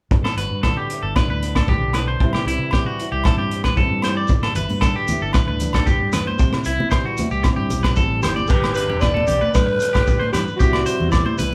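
Joyful highlife guitar band music in G major at 114 BPM, cut from a longer piece and played live in one large room, where a crunchy, saturated breakbeat drum kit sits up front with a tight kick and dark cymbals over a round, amped fingered bass, a fingerpicked steel-string acoustic guitar, twangy, slightly broken-up electric guitar arpeggios and ringing agogo bells, with grainy maracas and bright, high-tuned congas joining in the background by 4.6 seconds before a breathy, raspy alto saxophone with vibrato takes the solo melody at 8.2 seconds.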